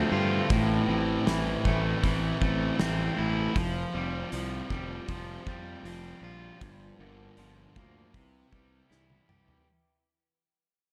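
Light reverb and a small room ambience wrap this hazy, brooding fragment of shoegaze-tinged dream pop rock, which fades out across its whole length. It moves at a straight 78 BPM in 4/4, drifting through Am, Fsus2, Gm7 and C. A bright, up-front overdriven guitar carries a crunchy riff soaked in reverse reverb, while a thick fuzz guitar adds a riff of its own with a distorted, gently chorused tone. Deep in the background, a dark, lo-fi, compressed electric guitar through a small old amp plays fingered arpeggios with subtle chorus and tape echo. A round, fuzzy, overdriven fingered bass enters at 0.1 seconds, and a loose indie drum kit joins at 0.5 seconds with a punchy kick, medium-tuned snare, hi-hat and toms in a pumping studio room. The drums close the passage with a fill starting at 8.9 seconds.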